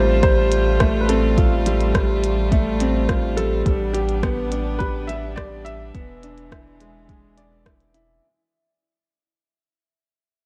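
Intimate and moving, this short excerpt of piano and strings electronica moves at 105 BPM in a straight 4/4, with a felt-muted upright piano carrying a soft, mellow melody touched by tape echo while a clear, woody upright piano plays a riff, also echoed, both parts letting their action noise show. A rich string quartet holds smooth, bowed chords with vibrato over a deep, round analog bass with sidechain pumping, joined by a punchy, layered electronic kick, and a minimal click drum kit adds clicky hi-hat and rim click from 0.2 seconds. The passage is a drop that fades out across its length, moving from Fadd9/A through G/A to E7 in a small, lightly reverberant room.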